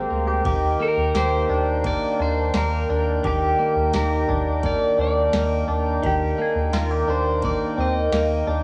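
Ethereal and floating, this brief dream pop excerpt drifts at 86 BPM in a straight 4/4, sitting in Eb major with a tuning a touch below standard pitch. A reedy, breathing pedal harmonium holds sustained chords from the very start, while a bright, twangy clean electric guitar, recorded direct and compressed, picks arpeggios up front through analog chorus and analog delay. Underneath, a round analog bass with a dark square-and-sine tone and a moving notch filter anchors the low end, and a booming analog drum machine with a deep kick, crisp snare, ride cymbal and tambourine enters at 0.4 seconds. At 0.8 seconds a slightly broken-up electric guitar takes the melody, its picked tone colored by phaser and analog delay. The harmony rests on Ebmaj7 before shifting at 6.0 seconds to a rootless Cm9 over Eb, all bathed in a moderate spring reverb with the hazy character of a home cassette recording.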